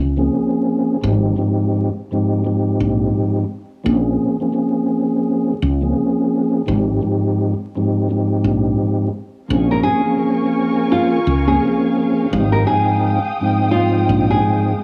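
Moody and tough, this swung hip hop excerpt rides on a round, punchy fretless electric bass and a soft, flute-like tonewheel organ with chorus vibrato, key click and a stopped rotary speaker, the organ filtered and dulled by cassette tape. At 9.5 seconds a lush, bowed symphonic string section slips in low in the mix, and at 9.7 seconds a dark, full-bodied nylon-string guitar takes the fingerpicked melody through analog delay, finger squeak audible. The piece sits in a small room with light reverb, home cassette character and vinyl crackle.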